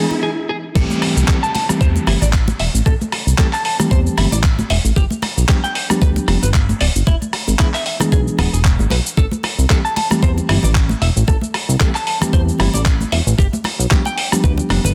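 Groovy and cosmic, this nu-disco excerpt opens on a background riser while a mellow tine electric piano pumps its chords, a dark, clean electric guitar plays a chorused, gritty riff with delay, and bright, damped congas play in the background, before the drop at 0.8 seconds brings in a glossy, up-front chorused synth bass, an overdriven thumpy electronic kick and a dusty, tape-warm sampler-style kit with handclaps, hi-hat, rim click, shaker and crash, all moving through Am7, G7 and E7 under a dense, heavily limited master.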